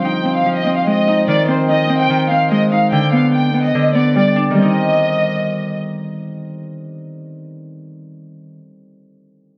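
Tense and cold, this hip hop excerpt moves at 146 BPM in 4/4 with a half-time feel, set in C harmonic minor and tuned to A4 = 443 Hz. A dark, woody studio violin section carries the melody with lush, bowed vibrato, its tone softened by a low-pass filter, before falling away at 5.8 seconds. Beneath it, an up-front Celtic harp supplies bright, ringing fingerpicked accompaniment, also filtered, and carries on until 8.7 seconds. The harmony passes from Fm7 through Ab and G before settling on Cm as the second section begins at 4.6 seconds. Light reverb and a small room ambience frame the warm production.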